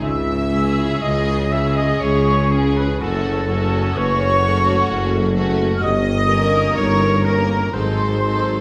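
A slow, rubato 3/4 pulse of 58-65 BPM carries this solemn, elegiac romantic orchestral movement in C# minor, a short cut from a longer piece that moves from C#m through F#m to D#7/G and G#7b9. A very quiet, lush violin section sings the melody from 0.5 s, over hushed violas, while the other violins, a clear oboe, a bright clarinet and a pure, expressive flute section share a second line, and a fingerpicked, ringing harp spins arpeggios. From 1.0 s mellow French horns hold chords in the background, and a tuba, a cello section and double basses anchor the bass in a reverberant recital hall.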